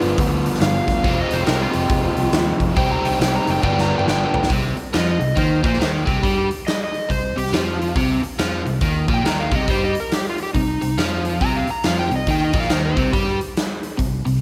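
A swung 4/4 groove at 139 BPM drives this smoky, gritty slice of blues rock and southern rock in C harmonic minor, with a big-room acoustic drum kit up front, its punchy kick and medium-tuned snare joined by hi-hat and toms, and a growly, round fingered electric bass beneath. A biting, double-tracked overdriven guitar plays the riff, while a dark overdriven slide guitar with slapback echo carries the melody, taking a solo until 4.5 seconds over G7, Fm and Cm before a drum fill leads into the next section. The slide drops out at 13.1 seconds as the band rides on under light reverb.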